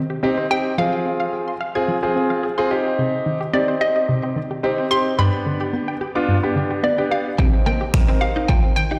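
Bathed in a lush hall reverb and heard as if through a big sound system in a bare stone room, this energetic, confident dance-pop excerpt in C minor moves at 109 BPM over a Cm, Fm, Cm and G progression. A hollow, warbling square-wave pluck carries the melody with chorus and digital delay, while a detuned sawtooth unison pluck spins arpeggios with digital delay. An intimate, polished grand piano with audible action noise plays accompaniment, and both the arpeggio pluck and the piano pump against the sidechain. At 7.4 seconds, as the chords return to Cm, a clean, direct-recorded electric guitar riff with ensemble chorus arrives alongside a punchy deep house kit of kick drum and finger snaps.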